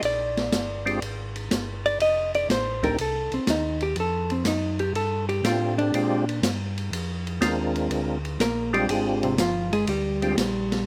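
Swinging and greasy, this short soul jazz organ trio excerpt moves at 122 BPM with a strong swing feel, as a dark, compressed hollow-body electric guitar takes an up-front solo over Bb13 and F13 chords, while a round, mellow tonewheel organ carries the bass through a slow rotary speaker, a percussive tonewheel organ with third-harmonic bite and chorus vibrato enters with the melody at 0.9 seconds, and an acoustic drum kit with boomy kick and dark cymbals sits close in a dry, roomless sound.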